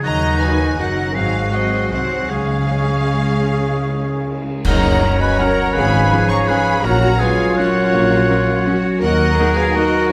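Bathed in a wet, spacious scoring-stage reverb, this festive, sweeping orchestral ballroom waltz in 3/4 moves with a rubato lilt, cut from a longer piece. A lush bowed violin section carries the focused, vibrato-laden melody, while a second violin line, the violas and the cellos sit smoothly in the background and the double basses give a rich, expressive bass. An airy, hollow silver flute and a soft-attacked solo oboe with a mellow tone add second lines, a very quiet fingerpicked harp rings out arpeggios, and a distant, dark French horn section holds sustained chords. Bright cymbal swells, clash cymbals and concert bass drum sweep through from 2.3 to 5.4 seconds. At 4.7 seconds the orchestra hits an accent as a clear, vintage-toned solo trumpet begins its stabs and a smooth-topped tuba joins the bass.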